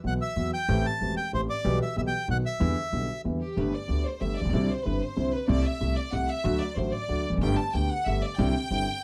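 A bowed violin section, smooth and lightly vibrato-touched, takes the spotlight in this melancholic, tense tango fragment, carrying a solo from 3.6 seconds as the harmony moves from E minor to G major. Before that, an up-front, reedy bandoneon sings the melody until 3.2 seconds. Underneath, a dark concert grand piano plays the accompaniment throughout, mellow and vintage in character, with deep bass and audible action noise. A pizzicato upright bass on gut strings adds a woody, thumpy low end. At 187 BPM in 3/4 with a rubato feel, the piece moves through chords such as Esus2, Am7, Gadd9 and Cadd9, captured with close, detailed miking and light reverb.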